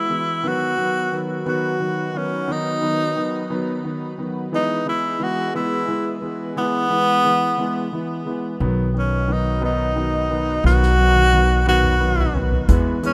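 A bright tenor saxophone leads this tender, romantic pop ballad in B major, singing the melody up front with a soft attack, jazz-style vibrato and a touch of delay. Beneath it, a polished grand piano supplies the accompaniment while a lush, thick pad of detuned sawtooth and square-wave tones sits in the background with a slow attack, chorus and phaser. The piece moves slowly at 59 BPM in a straight 6/8, and the harmony shifts from B to E and back to B. At 8.6 seconds a woody, thumpy upright bass enters up front, played pizzicato on steel strings. A soft-mallet acoustic drum kit of hi-hat, boomy kick, medium-tuned snare and toms joins in the background at 10.7 seconds and plays a drum fill that runs until 12.7 seconds. The whole sits in studio reverb with the rough character of a home demo, and the passage is cut from a longer piece.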